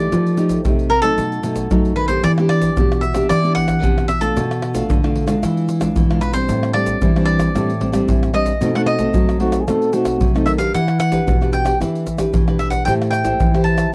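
Samba and choro in a joyful, sunny mood, this clip from a longer piece sets a crisp, up-front picked cavaquinho melody over a fingerpicked classical nylon-string guitar accompaniment and a dark, thumb-plucked nylon-string bass line with fresh strings, driven by a close, hard-handed percussion group of tube shaker, deep surdo, pandeiro and tamborim, while a mellow, whispered, breathy trombone slips in briefly with a jazz-style second line from 9.4 to 10.3 seconds, all captured in a dry, close 1970s-style studio sound with light reverb.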